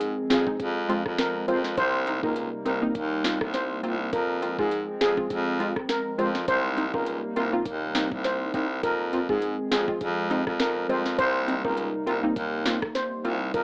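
Dancehall at 102 BPM in F minor, bouncy and tough, this short cut from a longer piece rides an overdriven electronic drum kit with knocking kick, sharp snare, rim click and metallic hats under an edgy baritone saxophone bass with light vibrato, while a shimmering steel pan carries the melody through digital delay from 0.3 seconds, punchy detuned sawtooth chord stabs and a hollow, airy pad pump with sidechain over Fm and Cm7 changes, all in a dry, rough home-demo mix with an AM radio sound.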